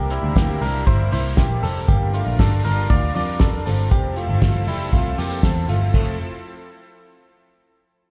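A breezy, nostalgic slice of jangly indie pop in F major at 118 BPM opens with a lush, detuned sawtooth pad holding chorused chords, a bright, twangy clean electric guitar picking delayed arpeggios, and a round, foam-muted vintage bass sitting up front, with a cloth-damped drum kit of fat snare, tight kick, hi-hat and dark crash joining at 0.1 s. The harmony moves from C7 through Gm7 to Fmaj7, and at 5.9 s a very quiet, close-miked trumpet with light vibrato slips in on a second line as the passage turns toward a new section. It all sounds like a live club gig heard through the venue's PA, with light reverb and small-room ambience.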